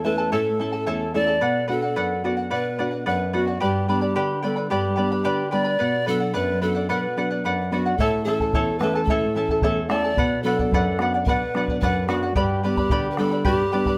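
A straight 2/4 pulse carries this melancholic yet festive Andean folk excerpt, with a bamboo pan flute playing the breathy, tongued melody with vibrato, audible chiff and lifted highs over a cycle of A, Bm and G chords. Up front, a shimmering charango fingerpicks on double strings, some octave-doubled, while a dark, full-bodied nylon-string guitar fingerpicks deep classical lines with occasional finger squeak. A round bombo joins at 8.0 s with a live-room sound, all set in light studio reverb within a rough home demo mix.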